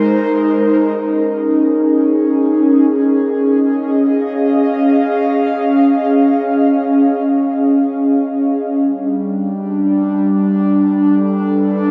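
An airy, breathy pad carries this short ambient fragment entirely on its own, sitting up front with a soft, full-bodied, mellow tone. Its sound blends detuned sawtooth and triangle layers with a breath of noise and a touch of ring modulation, while chorus and delay lend it a shimmering depth. The pad rises gently on a slow attack, holds its sustained tones across a span from G3 to E#5, and fades on long releases, all in free time with a peaceful, serene mood. The harmony drifts from G# to C# at 1.0 seconds, then shifts to G at 8.8 seconds before the passage, cut from a longer piece, breaks off at 11.9 seconds. A lush hall reverb surrounds it, giving the whole a spacious glow.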